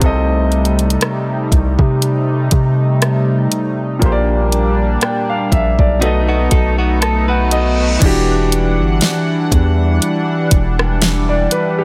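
Smooth and romantic, this contemporary R&B passage at a slow 60 BPM in 4/4 rides a gentle sixteenth-note swing, with a soft-kicked, fat-snared electronic drum kit and a deep, sine-toned 808-style bass sitting up front. A warm concert grand piano and a shimmering, retro pulse-width pad with chorus and sidechain pumping carry the chords from Cm6 through Bb6 to B7, while a clean, compressed, direct-recorded electric guitar adds delayed arpeggios from 6.0 to 8.0 seconds. A reverse cymbal rises into a new section at 8.0 seconds on Em9, all set in light reverb.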